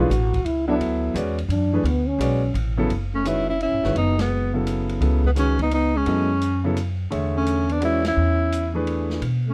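Intense yet cool, this modal jazz excerpt swings in 3/4 at 171 BPM in F# minor, with a dry, close studio sound recalling the 1970s. It opens with a dark, whispered trombone solo over the first 2.9 seconds, its breathy tone carrying a light vibrato, while a warm concert grand piano with deep bass provides accompaniment up front. A woody, pizzicato upright bass with steel strings anchors the low end, and an acoustic drum kit with dark cymbals, a medium-tuned snare and a boomy kick sits back in the mix, heard through a natural small room. At 3.1 seconds a mellow, intimate tenor saxophone takes the melody, with soft attacks, scooped notes and a smooth top, as the trombone shifts to a second line. The harmony moves from Bm9 to F#13sus4 and then E7sus4, with band accents landing at 4.1 and 8.0 seconds.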